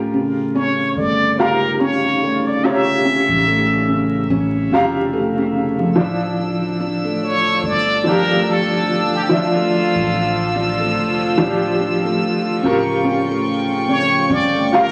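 Caught on a phone in the room, this cut from a longer trip hop piece carries vinyl crackle, studio ambience and a moderate echo-chamber reverb. At 72 BPM with swung 16ths in D harmonic minor, a woody upright piano with tremolo, 12-bit sampler grit and tape echo plays the chords, while a felt-muted piano with audible action noise adds intimate, echoing arpeggios over a round, sine-like 808-style bass. A brilliant, wah-wah plunger-muted trumpet carries the brooding, hypnotic melody through dub echo from 0.6 seconds, a floating sul tasto violin section enters at 6.0 seconds, and a very quiet, tense, detuned sawtooth drone creeps in at 7.3 seconds.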